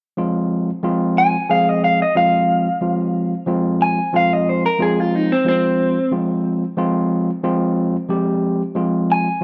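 A straight 4/4 blues pulse carries this mournful, smoky fragment from a longer piece, where a gritty, overdriven tine electric piano pushed through a combo amp sits up front on an F minor chord from 0.2 seconds, and an electric guitar through a small old amp, picked and slightly broken-up with a lo-fi edge, takes the melody from 1.2 seconds, all bathed in a moderate echo chamber reverb.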